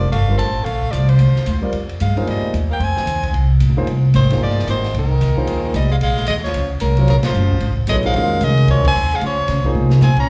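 Heard as a live gig through the venue's PA with light club reverb, this hypnotic, cool modal jazz excerpt swings at 224 BPM in 4/4. A breathy soprano saxophone carries the melody over a raspy, growling tenor saxophone second line, both with slapback echo. A woody, up-front pizzicato upright bass, a dark, boomy-kicked jazz drum kit and a concert grand piano with deep bass and slapback echo support them. The band settles into Bb minor at 6.0 s, hits accents at 7.2 and 8.8 s, and closes on a drum fill.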